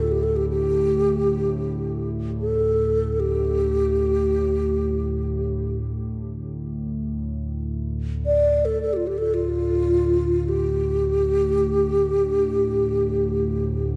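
Unfolding in free time with a floating, unmetered pulse, this 14-second excerpt of world-leaning meditation music sits in D minor pentatonic and feels spacious and contemplative. A mellow, hollow alto flute with a wooden head carries the melody between F4 and D5, its airy tone marked by gentle vibrato and tongued notes, and a dub echo trails its phrases. Underneath, an analog drone holds the low register from D2 to A2, its dark, nasal sawtooth and pulse-wave timbre evolving through pulse-width modulation and a chorus effect. The drone's slow attack and long release keep it sustained throughout, while both parts stay up front in the mix. A generous plate reverb and heavy echo fill the space, and a cassette-tape character adds a soft, aged patina to the recording.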